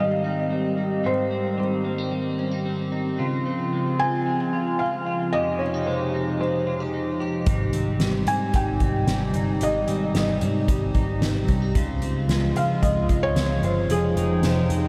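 Floating and dreamy, this dream pop passage drifts along a straight 4/4 pulse, cut from a longer piece. A felt-muted upright piano carries the melody with an intimate, mellow touch, its hammer action audible and its notes trailed by delay. Beneath it, a hollow, flute-like pad with slow attack and long release holds sustained chords under a chorus sheen, while a clean electric guitar picks arpeggios through lush chorus and delay, adding a warm glow. At 7.5 seconds a dark, round, foam-muted electric bass enters with a punchy amped tone, together with a soft-mallet drum kit of hi-hat, boomy kick and fat snare, placed up front in a big room. The harmony cycles twice through Abmaj7, Dbmaj7 and Fm9, and the whole mix is soaked in a huge, wet ambient reverb.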